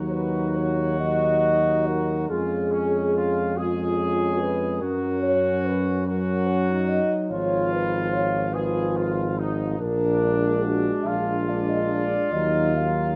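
Classical brass band music in a hymn-like, yearning and melancholic vein, this passage is cut from a longer piece and moves in a slow, rubato 6/8. A dark, distant trumpet section carries the melody with tight ensemble playing, while the French horn section sings a second line above it in a roomy tone touched by light vibrato. Set back in the blend, a vintage-sounding trombone section and a warm solo euphonium fill in the accompanying harmony. Anchoring everything from up front, the solo tuba lays down the bass line with its own slight vibrato. All five parts play together from 0.0 to 13.2 seconds, and the close, detailed microphones and light reverb keep the sombre chords clear.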